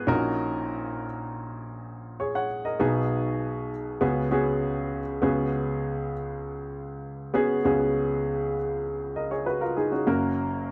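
A solo baby grand piano, intimate and up front with audible action noise and short, natural sustain, carries this uplifting, nostalgic pop passage cut from a longer piece, moving through D#m7/A#, B6 and C#7sus4 before landing on F# at 10.1 seconds, captured in a dry, close 1970s-style studio setting with a moderate booth ambience.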